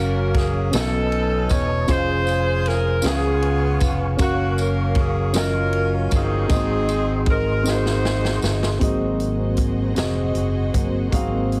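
Jubilant and uplifting, this slow gospel piece in 6/8 is cut from a longer performance and opens with an up-front saxophone section carrying the melody with jazz-style vibrato and a touch of tape echo. Beneath it, a dark concert grand piano supplies deep, natural accompaniment, while a soft, flute-like tonewheel organ holds sustained chords through a slow rotary speaker and chorus vibrato. A growly, amped fingered electric bass sits prominently, and a swinging big-band drum kit with punchy kick, medium-tuned snare, hi-hat and ride joins just after the start, followed shortly by a jingly tambourine. After a drum fill beginning at 7.7 seconds, the saxophones and tambourine drop out at 8.8 seconds, where the organ takes a solo and a lush, woody string section enters with close, bowed sustained chords. The whole mix carries a small-room reverb and a heavily compressed, radio-like sound.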